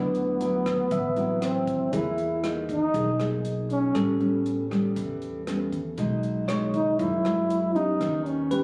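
A straight 4/4 pulse at 118 BPM sets this smooth, melancholic bossa nova excerpt in motion, with a compact cocktail drum kit entering at 0.1 seconds on hi-hat, punchy kick and rim click, its sound dry, dark and rolled-off at the top. Up front, a breathy trombone carries the melody in a mellow, whispered, intimate jazz voice with light vibrato and a soft attack. Beside it, a thumb-plucked nylon-string guitar in a classical manner supplies dark, prominent accompaniment, while a pizzicato upright bass with gut strings gives a woody, thumpy low end. From 0.9 seconds a clean, bell-like tine electric piano adds bright, direct accompaniment above, as the harmony moves from D9 through Emaj7#11, A9 and B6 to a closing D#aug7. The whole fragment, cut from a longer piece, was captured on a phone in the room, with light club reverb lending the space its air.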